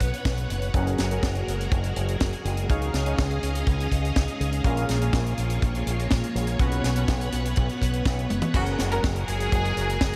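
A lush string machine sounds from the first moment of this sunny, romantic italo disco excerpt in F# major at 123 BPM, its sawtooth chords full-bodied with a sub octave and ensemble chorus, moving from Bsus2 through F#add9, C#add9 and A#m7. Underneath, a punchy fingered electric bass with an envelope filter sits up front, while a tight acoustic kick and a small-room funk kit with a high-tuned snare, hi-hat, toms and crash keep a straight 4/4 pulse. From 0.7 seconds, fat, detuned analog synth brass stabs with chorus and a diffuse ambient delay sit in the background, bold yet mellow. A drum fill arrives at 8.3 seconds, and at 8.5 seconds a clear chamber violin section enters with a bowed melody, biting and earthy with light vibrato and an analog delay. Light reverb, studio ambience and vinyl crackle frame the whole.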